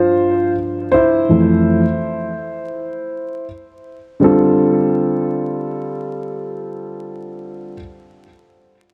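In free time, this short hip hop excerpt cut from a longer piece is a mellow, smoky solo for a dark concert grand piano, ranging from F2 to C5 with deep bass and audible action noise, placed intimate and up front with tape echo. The harmony moves from G7(no3) to Fmaj7 at 1.3 seconds, then shifts to a bare G5 as a second section begins at 4.2 seconds. A moderate echo chamber reverb surrounds the playing, and worn cassette tape with warbly pitch drift and vinyl crackle gives the sound a vintage patina.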